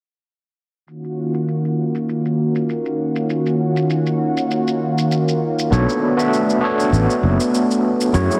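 A lush, thick unison pad built from detuned sawtooth and square waves carries this sunset chillout excerpt, its slow attack, long release and chorus giving sustained chords a full-bodied, bright glow from 0.9 seconds, while a filter sweep moves across it throughout. The mood is smooth and warm, set at 99 BPM in 4/4 with a light 16th-note swing, in Eb minor with tuning at A4 = 437 Hz, and the harmony shifts from Ebm9 to Bm9. An electronic, layered shaker sits low in the mix under a low-pass filter. At 5.7 seconds a barky, gritty overdriven tine electric piano enters up front through a combo amp, its medium tremolo and digital delay adding shimmer to the accompaniment. A growly, direct and amped fretless electric bass arrives alongside it, sustaining notes with a forward presence. The whole piece sits in a moderate concert hall reverb with a heavily compressed, radio-style polish.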